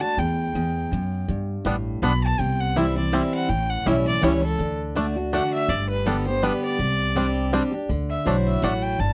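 This dry, close recording has the intimate feel of a 1970s studio, with little reverb around the players. It is a driving, lively bluegrass waltz in G major, moving at 164 BPM in 3/4 with a light swing on the eighth notes, cut from a longer piece. A single fiddle carries the melody from the start, clear and biting with light vibrato and an airy bow, sitting intense and up front. Beside it, a jumbo steel-string acoustic guitar picks a bright, full-bodied accompaniment, finger squeaks audible, while an upright bass on gut strings adds a woody, thumpy, dark pizzicato foundation from 0.2 seconds. A twangy, percussive banjo played with fingerpicks joins with arpeggios at 1.7 seconds and drops out at 8.7 seconds. The harmony moves from Em through G, C, A7 and D before settling back toward G, then colours the close with Csus2 and Dadd9.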